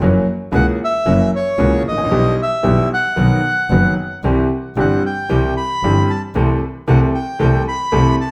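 Tango excerpt, passionate and tense with a rubato feel, where an up-front bright concert grand piano with deep bass carries the accompaniment, a close, earthy bowed double bass with light vibrato and a biting, nasal edge anchors the low end, and a reedy, dark bandoneon touched with tape echo enters at 0.5 seconds to sing the melody high above, all set back in a wet studio reverb over chords moving from F#7 through Em/B, B and C to Am/C.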